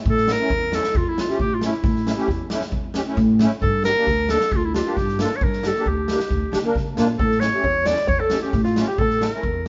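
This klezmer piece is bittersweet and soulful, moving at 134 BPM in a straight 4/4 in A phrygian dominant, and it is cut from a longer performance. A clear, close-miked clarinet carries the melody up front in a classical style. Beneath it, a reedy musette accordion with a shimmering, boxy character fills in the harmony, a woody pizzicato upright bass on steel strings anchors the low end, and a polished street-band kit adds a medium-tuned snare and boomy kick. The chords move from A to Gm at 3.6 seconds and back to A at 7.2 seconds, when a twangy, plunky fingerpicked banjo slips in quietly behind the others as a second line. The band sounds as if it is playing live together in a stone room with a moderate, lingering reverb, and the top end is gently rolled off.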